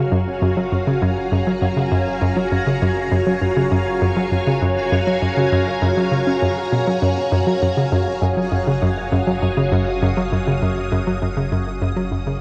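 A hollow, bouncy square-wave pluck carries the riff up front, its detuned tone thickened by chorus and analog delay, in this expansive, luminous stretch of sequencer-driven ambient space music cut from a longer piece. Lush vintage string-machine chords sustain on a single F#maj7, shimmering with phaser and ensemble chorus, while a fat analog bass sits low in the background, fading in across the whole 12.4 seconds as the recording fades out from 10.2 seconds onward. A huge, wet reverb and worn cassette tape with warbly pitch drift give the sound a hazy, aged glow.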